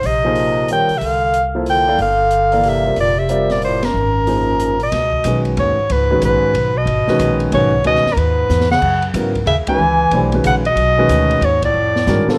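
A small room with a moderate spring reverb frames this hypnotic, intense modal jazz excerpt in a swinging 3/4 at 185 BPM, settling into C# dorian from 4.9 s over suspended and extended chords. An up-front soprano saxophone carries the melody with light vibrato, subtone and scooped notes, while a breathy bass clarinet traces a second line beneath it, and a concert grand piano with deep bass and audible action noise enters at 0.2 s to accompany. A woody, thumpy pizzicato upright bass anchors the low end, and a quiet acoustic drum kit with dark cymbals, a high-tuned snare and a boomy kick punctuates band accents and closes with a fill from 11.7 to 12.4 s.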